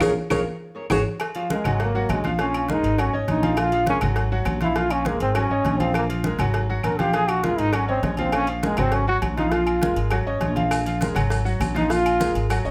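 This fiery, driving salsa excerpt at 202 BPM opens with a band accent and drum fill as a fingerpicked nylon-string guitar with tape echo sounds a brief melody until 1.0 s, over brilliant baby grand piano, a dark, woody pizzicato upright bass, soft-handed congas, tight cowbell, ringing timbales and agogo bells, dry claves and grainy maracas, before a bright, roomy trombone takes an up-front solo from 1.5 s over Bbm7, Ab7sus4 and Gbmaj9 changes, set in a moderate large studio reverb.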